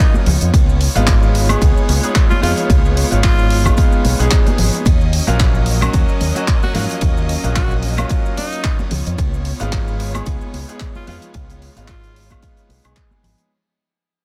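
Nu-disco with a groovy, sleek, swung feel, this excerpt is led by a bright, close-miked tenor saxophone with vibrato and delay, over a brilliant grand piano with digital delay and a veiled, con sordino string section whose sustained chords pump against the beat. An up-front, punchy electronic kick anchors a dry, damped 70s kit of handclaps, hi-hat, ride and woodblock, while soft-handed cabasa and congas ring in the background and a fingered electric bass with an envelope filter enters at 0.3 seconds. The dense, heavily limited mix sits in small room ambience, with chords moving from Db7 to Ebm7 and back, and a fade-out begins at 4.9 seconds.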